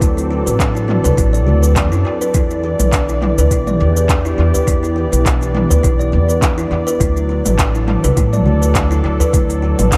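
A woody pizzicato upright bass sits up front with tube saturation and sidechain pumping, anchoring this earthy, meditative organic downtempo piece at 103 BPM in 4/4, with a light 16th-note swing in E minor over D7, Em7 and D chords. A ringing, airy kalimba plays arpeggios through tape echo above a warm, detuned, warbling analog pad of sustained chords with lush chorus and sidechain pumping. A soft, overdriven electronic kick and an overdriven electronic kit of smooth hi-hat, handclaps, shaker and toms with tape echo keep time, a deep udu with tape echo sits in the background from 1.1 to 9.3 s, and the echo-heavy mix carries light reverb.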